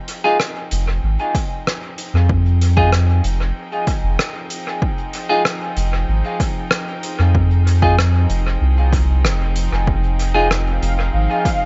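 Ambient dub with a deep, meditative mood, where a bright, earthy chamber string section fades in on sustained Fm7 chords, a round sub bass sits up front, a punchy overdriven electronic kick enters at 1.3 seconds alongside soft-mallet hi-hat and rim clicks trailing dub echo, clean picked electric guitar stabs echo through the mix, and a reversed, granular swelling texture rises in at 10.8 seconds just before this cut from a longer piece ends.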